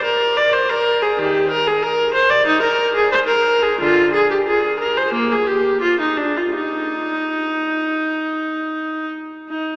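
A lone bowed viola opens at once and carries the whole fragment from 0.0 to 9.8 seconds, its reedy, gut-string tone placed close and up front. This is a baroque-style suite movement for unaccompanied viola, played by one musician in period style. The mood is dance-like and flowing, and the 4/4 pulse bends with a free, rubato feel. The line ranges from D3 up to D5. A wet cathedral reverb with a long 5.6-second decay surrounds the solo. The recording is a brief portion cut from a longer piece.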